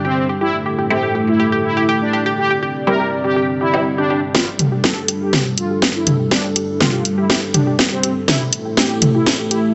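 Melodic techno at 122 BPM in G dorian, dramatic and driving, where a fat, warbling analog synth brass melody rides over a dark, moody pad with 12-bit grit, a round sawtooth pluck arpeggio on G4 under a filter sweep, resonant filtered dub chord stabs through phaser and tape echo, and a tense, string-like drone that ends at 4.4 s, all pumping to the sidechain, before a build-up with a drum fill begins at 4.3 s as a punchy background kick and an up-front house kit with a cracking snare enter, the dreamy mix soaked in plate reverb as the chords move from Am and C to Gm7 and back to Am.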